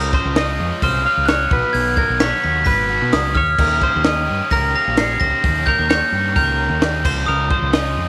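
A sparkling, bell-like glockenspiel struck with hard plastic mallets carries the melody up front with a slapback echo, ringing over a twangy, compressed twelve-string electric guitar playing clean arpeggios and a double-tracked overdriven guitar riff. This playful, bright math rock and midwest emo excerpt moves at 130 BPM in a straight 4/4, with a growling fingered bass adding overdriven weight and a crisp fusion kit bringing a high-tuned snare, punchy kick, hi-hat and crash in a pumping small room. Light reverb frames the chords as they move from Dbmaj9 through Cb6 and Eb9 and back to Dbmaj9 at 7.0 seconds.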